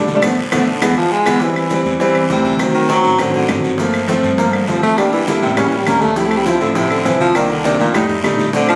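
Afro-Cuban jazz with a sunny, danceable feel, this cut from a longer piece puts a baritone saxophone solo up front, its warm subtone tone shaded with vibrato and scooped notes, beside a clear, smooth concert grand piano with a vintage, deep-bass character. Pizzicato upright bass on steel strings sits lower in the mix. Very quiet bright, thin-skinned congas, round, low-tuned bongos, raspy guiro and grainy, mellow maracas join at 0.1 seconds, and woody claves follow in the background from 0.2 seconds. A drum fill and band accent mark the opening until 1.4 seconds over chords such as Bm7b5 and E, and the piece sounds like a phone capture in the room with light reverb.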